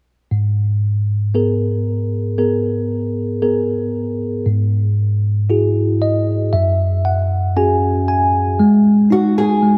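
A bell-like tine electric piano opens this short pop fragment at 0.3 s, its bright, clean tone sitting up front with an analog chorus, as if heard through built-in speakers. At a slow 58 BPM in G# minor with a straight 4/4 feel, the mood is heartbroken and emotional, moving through G#madd9, Eadd9/G# and F#sus2 before settling on G#5. The electric piano carries the accompaniment across a span from F#2 to G#5 and adds a fill from 5.5 to 8.6 s. Near the close, at 9.1 s, a dark, small-sounding nylon-string guitar enters up front with a brief fingerpicked melody between F#4 and G#4, colored by a lush chorus. A moderate plate reverb with a 2.9-second tail soaks the dreamy mix, and the passage is cut from a longer piece.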